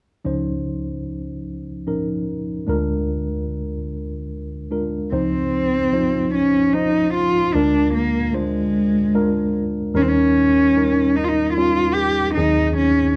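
An acoustic folk-pop ballad in a straight 3/4, this short excerpt feels hopeful yet nostalgic. A tine electric piano opens alone at 0.2 seconds, its worn, slightly out-of-tune tone heard clean and up front as if through built-in speakers, laying down chords that move from Dbmaj9 toward Bb7/D. At 5.1 seconds a single dark cello takes the melody, bowed sul tasto with a soft attack, vibrato and a smooth top, sitting close, intimate and up front alongside the piano. The harmony then travels through Eb7 to Ab7/Eb, and the passage is cut from a longer piece. A wet studio ambience surrounds both instruments, and the whole recording carries the warbling pitch drift of old cassette tape.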